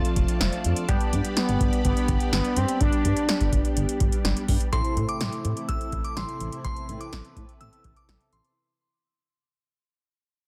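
Melancholic and nocturnal, this synth-pop fragment rides on an overdriven analog drum machine, up front with a deep kick, punchy snare and metallic hats, beneath a smooth, dark gliding synth bass and a funky, detuned polysynth comp with a moving notch. Mellow string-machine cellos hold full-bodied sustained chords under an expressive, resonant sawtooth lead with vibrato, chorus and delay, which carries the melody until 4.2 seconds. At 4.7 seconds a glassy FM bell line enters, crystalline and decaying through chorus and delay, as the passage fades out toward its end at 8.6 seconds.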